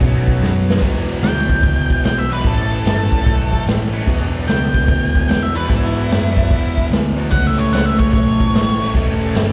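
Blues rock in a power-trio vein with a southern rock edge, this raunchy, driving clip is cut from a longer live performance and rolls along with a swung shuffle feel over dominant-seventh changes moving through B7, E7 and A7. An up-front vintage drum kit with a punchy kick, a medium-tuned snare and a rolled-off top drives the groove, opening with a short fill at 0.4 s, while a dark, round, foam-muted picked bass holds down the low end. A double-tracked overdriven rhythm guitar plays a riff with a slapback echo and spring reverb, sitting just as far forward as the drums. An octave-fuzz lead guitar enters at 1.2 s with a distorted melody carrying its own slapback echo. Very far in the background, a thick, gritty tonewheel organ sustains chords through a slow rotary speaker and chorus vibrato, stepping forward briefly with a fill at 2.8 s. The sound carries the feel of a gig heard through the venue's PA, with small-room ambience and a recital-hall reverb around the band.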